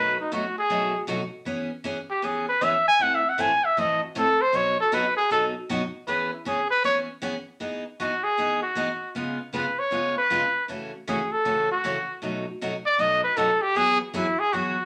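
A breathy trumpet and a picked steel-string acoustic guitar open together on this playful, swinging country excerpt in E major at 156 BPM, with the trumpet up front carrying a jazz-style solo through both passes of the same section, its smooth top and light vibrato floating over the bright, full-bodied picking of the dreadnought. The harmony moves through colorful changes such as B7, E6, C#7 and F#m7/C# before settling on Eadd9 near 13.8 seconds. A wet studio reverb gives the pair a snug, roomy glow until the guitar stops at 14.8 seconds and the trumpet at 14.9.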